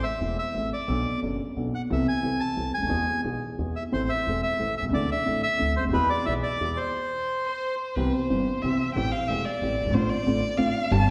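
Tango in 3/4 at 179 BPM with a rubato feel, passionate and dramatic, opening in A harmonic minor as a reedy, vintage-toned bandoneon carries the melody over a dark, boxy upright piano with audible action noise and a woody pizzicato upright bass. The band halts at 6.9 s, and at 8.0 s the music turns to C major as a single bowed violin, expressive with vibrato and portamento, takes a solo through to the end at 11.1 s. The whole piece sits in the wet reverb of a church or concert hall, cut from a longer performance.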